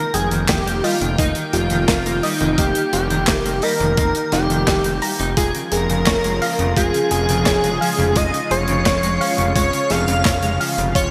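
A thick, bold detuned unison lead with digital delay carries the melody from the start, shadowed by an airy, dreamy second lead with chorus and phaser, over a lush, warbling pad that pumps in the background and a soft, round pluck arpeggio with cassette-tape coloring, soon joined by a fat, saturated analog bass, a big rock kit of hi-hat, snare and handclaps, a clean picked electric guitar riff with 12-bit grit from 0.3 s, and an overdriven, thumpy electronic kick from 0.5 s, all in a nostalgic, moody synthwave excerpt with bright 1980s-style digital production and a hall reverb, shifting from Eb/F to Db/F at 5.4 s.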